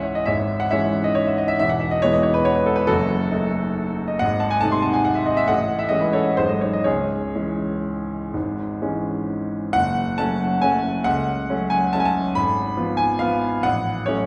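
A rubato waltz in 3/4 sways freely through this short, bittersweet and nostalgic classical piece for solo upright piano, which sounds bright, woody and polished with a long sustain. A wet recital-hall reverb surrounds it, heard from further back in the room. At 9.8 s the music shifts into a new section in a different minor key, and the passage ends at 14.3 s as a fragment cut from a longer work.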